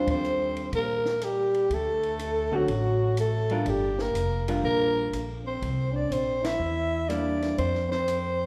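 Sophisticated and swinging, this brief fragment of small-group swing and bop in Eb major moves at 122 BPM. A raspy, growling soprano saxophone carries the up-front melody over a punchy trombone second line, while a dark, clean hollow-body electric guitar comps until 7.6 s, a woody pizzicato upright bass anchors the low end and a dry cocktail drum kit with dark cymbals and a high-tuned snare keeps time, with band accents landing at 0.0 and 6.4 s in a reverberant concert-hall space.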